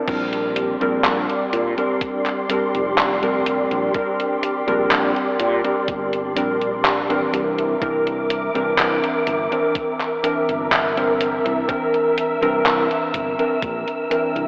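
This vaporwave excerpt drifts by in a faded, woozy haze, with the whole mix soaked in cathedral-sized reverb and coloured by cassette grit and a narrow, telephone-like sound. Up front, warbling lo-fi synth keys play the accompaniment, their square and sawtooth tones given a filter sweep, analog chorus and tape echo, with fast attacks that decay into a mellow, nostalgic glow. Above them, a soft string machine holds silky, slowly blooming chords with a long release and ensemble chorus, its vintage pulse-wave texture evolving as it sustains. A growly, direct fretless electric bass sits underneath with its own analog chorus, while a thumpy sampler-style kick and a gated 80s digital drum machine supply the beat, the drum machine adding crash cymbal, handclaps and hi-hat through gated reverb and low-pass filtering. The harmony rests on a Bb69 chord before moving to C9 at 7.3 seconds, and the passage breaks off as part of a longer piece.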